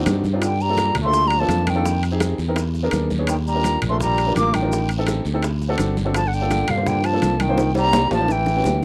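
This short cut from a longer Afro-Cuban jazz piece opens on a woody upright piano accompanying and a fingered electric bass sitting up front with a direct, amped tone, joined almost at once by a full percussion section of congas, bongos, timbales, guiro and maracas. At 0.4 seconds a silver concert flute takes the melody, pure and soft in its attack with vibrato, while a brilliant, punchy trombone plays a second line behind it with scooped, forceful jazz phrasing. The timbales ring close and dry from their metal shells, the ringing congas and tight, high-tuned bongos sit very quiet in a live room, and the raspy guiro and grainy, saturated maracas stay in the background. The harmony is rich and shifting, moving through extended chords such as Gm9, Ebmaj9 and D7 before landing on A13. A drum fill from 7.6 seconds closes the passage, and the small-room, 1970s-style studio sound keeps the sophisticated, danceable groove intimate.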